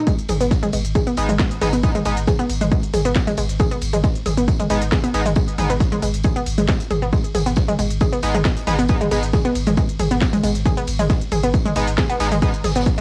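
A straight 4/4 pulse at 136 BPM drives this dark, hypnotic slice of peak-time techno in G# minor, cut from a longer piece and resting on a single G#m chord throughout. A punchy, tape-warm electronic kick sits up front, joined by a layered techno kit with a cracking snare, smooth hats, ride cymbal and toms, while an acoustic jazz kit adds a high-tuned snare, hi-hat and tambourine in the background through high-pass filtering. Beneath them, a deep, thick sub bass holds G#1 with tube saturation, a low-pass filter and sidechain pumping. The lead riff is a lush, detuned unison pluck with wave-folded sawtooth bite and a short decay, sitting up front and roughened by 12-bit sampler grit, tube saturation, cassette tape and analog delay. From 1.2 seconds an edgy, bright sync-sweep polysynth lays nasal, sustained stabs under chorus and analog delay, stopping at 12.5 seconds. The whole track has the hazy feel of a home cassette recording with light reverb.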